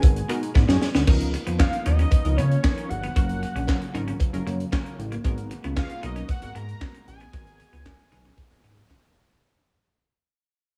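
A close, small-room sound frames this late-night, danceable early-eighties boogie funk excerpt, where an up-front tight drum kit with a high-tuned snare, handclaps and gated reverb plays a fill from 0.6 to 1.1 seconds before the music fades out from 1.1 seconds, while a glossy chorused synth bass, a punchy polysynth comp, a very quiet airy unison pad, a fat analog lead with phaser, vibrato and tape echo, a metallic cowbell, and a bright, clean electric guitar riff entering at 0.3 seconds carry the groove through G#m9, C#13 and F#maj7.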